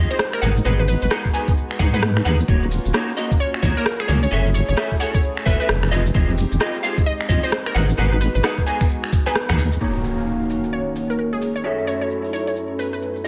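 UK garage in a skippy, moody two-step at 131 BPM in Eb minor, with swung sixteenths driving a gritty, thumpy, pitched-down kick that enters at 1.3 seconds and a tape-toned garage kit of finger snaps, crisp hats, rim clicks and shaker filtered and re-recorded in a large room. A deep, dark wobble bass sits up front beneath a smooth, slow-blooming analog pad with sidechain pumping, slightly broken-up lo-fi electric guitar stabs with chorus and delay, and a crystalline wavetable pluck melody, all moving through Abm7, Ebm7, Gbm7 and Fm7. At 9.8 seconds the bass stops as an electronic impact lands and the drums get a filter sweep, and from 10.7 seconds a very quiet, ethereal airy pad with a phaser drifts in under light digital ambience, in this fragment of a longer piece.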